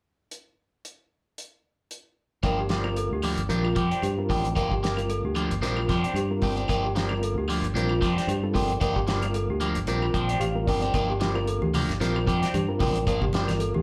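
Afrobeat at 113 BPM in G minor, defiant and driving, cut from a longer piece and heard as a live gig through the venue's PA with club reverb. A damped 70s drum kit with a fat snare and tight kick opens alone before the groove fills out at 2.4 seconds: a round, dark fingered bass and slightly broken-up electric guitar stabs with phaser and slapback sit up front, while woody claves, a bell-like, slightly out-of-tune worn celesta playing arpeggios and a reedy electric piano with tremolo fill in around them over a Gm7 and Bb69 vamp. The electric piano takes a short fill just before low-tuned, thick-skinned congas join in the background at 10.9 seconds.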